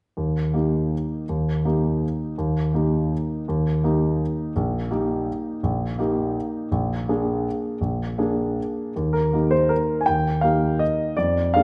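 A single grand piano sits up front in a recital hall, its tone warm, intimate and natural, with the clatter of its action audible beneath a wet wash of reverb. This short classical piano waltz in Eb major has an elegant, sparkling mood and moves in 3/4 with a rubato feel, its tempo drifting between 149 and 176 BPM. The solo piano ranges from a deep Bb1 up to Ab5, and its harmony settles on Eb before passing through Eb over Bb and a Bb7. At 9.0 seconds the music turns to a new section that returns to Eb, and the piano plays on until the clip breaks off at 11.6 seconds, cut from a longer piece.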